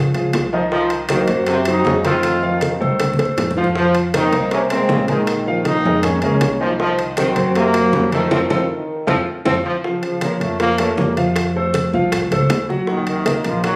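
Heard as if through a phone in a roomy, compressed studio space, this fiery, driving salsa fragment sets an intimate grand piano with audible action noise and a growly, woody pizzicato upright bass under ringing metal-shell timbales, low-tuned congas and tight, high-tuned bongos, while a punchy trombone section carries the melody with light vibrato from 1.1 s over a second trombone line that stops at 9.7 s, just as a drum fill and band accent lead into a new section at 9.8 s.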